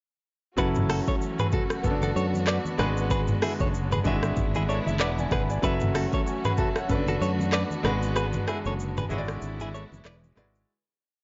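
A round, punchy fingered electric bass sits up front in this mellow, smooth afrobeats piece, playing a bouncy syncopated line with slides beneath an overdriven electronic drum kit of deep kick, metallic hats, rim clicks, shaker, handclaps and toms, with very quiet congas interlocking underneath. A clear, intimate grand piano pushes spread chords with grace notes and a short fill at 4.4 seconds, a bright, twangy clean electric guitar repeats an interlocking figure doubled in thirds through spring reverb and analog delay, and a lush bowed string section holds a sustained pad. The dry, gritty recording drops into a break that fades out from 8.2 seconds.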